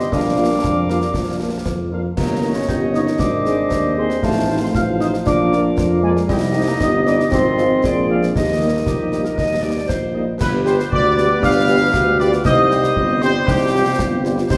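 A clear, smooth-topped trumpet section carries the melody of this proud, rousing military-style march for wind band in 2/4, entering at 0.4 s over a warm, distant tuba bass, a warm euphonium second line in the background and very quiet, mellow trombone chords. A pure, wooden-toned piccolo and a distant woodwind section add second lines, while a dark, tight French horn section fills in the accompaniment. Close, dry concert snare, bass drum and dark clash cymbals drive the passage, all within a reverberant recital hall, and the harmony turns toward G7 and C minor from 10.4 s in this fragment cut from a longer piece.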